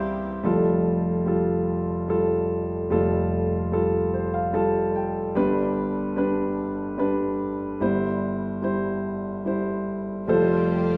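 A concert grand piano carries the melody up front in this hopeful, nostalgic acoustic folk-pop ballad, its deep bass and long sustain spanning from F1 up to A5. The piece moves at an unhurried 73 BPM in 3/4 with a straight feel, drifting from Fadd9 through G and C/G before settling back on Fadd9. A chamber string section sits in the background with sustained, bowed chords, heard only at the very start and again from 10.3 seconds, its gut-string tone, light vibrato and reedy, period-style character adding a rich edge close behind the piano. Between 3.7 and 5.4 seconds the piano adds a fill that leads into the G chord. The band plays live in one room, bathed in a wet large-studio reverb with a 1.4-second tail, and the passage is cut from a longer piece.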